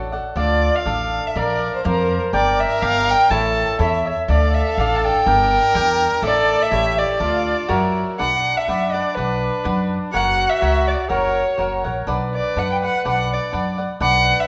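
Set in a straight 2/4 in a festive, proud mariachi style, this cut from a longer piece features a dark, woody solo violin with vibrato carrying the melody up front, joined by a mellow, classical-style trumpet line, crisp picked cavaquinho and a thumpy gut-string upright bass in pizzicato, while a very quiet, lush symphonic violin section holds sustained chords from 4.3 to 8.2 s, just before the music shifts to a new key in a moderate concert hall reverb.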